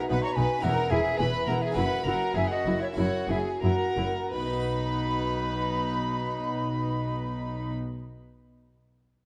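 Lively and brilliant, this short passage from a baroque-style concerto movement moves in a straight four-beat metre and slows over its first 4.3 seconds. A mellow, airy silver flute carries the melody together with a violin section playing higher with a gut-string tone and light vibrato, while a second violin line sits beneath. A close-miked, dry Flemish-style harpsichord with a plucked, full sound fills in the accompaniment alongside nasal, dusky violas. Cellos and double basses anchor the bass with period-style bowed tone, the basses reedy and the cellos sombre. The harmony returns to its opening chord at 4.3 seconds, and a moderate scoring-stage reverb gives the dark production a soft bloom.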